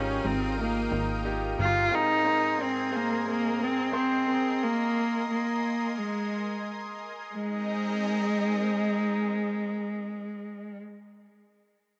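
A moderate spring reverb surrounds this hopeful, uplifting pop excerpt in Ab major at 89 BPM with a light sixteenth-note swing, where a focused, bowed solo cello sings the melody with vibrato up front over a lush, detuned unison pad with chorus, while a deep, open concert grand piano accompanies until 4.6 seconds and a punchy, funky analog bass plucks briefly until 1.9 seconds, as the harmony moves from Ebadd9 over Ab to Abadd9.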